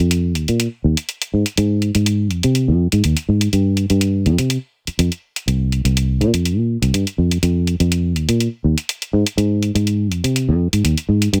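This filtered disco house excerpt moves at 123 BPM in a straight 4/4, with a sensual, groovy mood. A fingered electric bass carries the piece from the start, playing between C2 and C3 with a dark, round, foam-muted tone that sits up front, recorded direct and through an amp. A low-pass filter shapes the bass, and a filter sweep runs across it for the whole 11.4 seconds. An electronic hi-hat enters at 0.1 seconds, its analog character colored by being re-recorded in a large room, and it sits well beneath the bass in the mix. The overall sound is dry, keeping the focus on the filtered bassline.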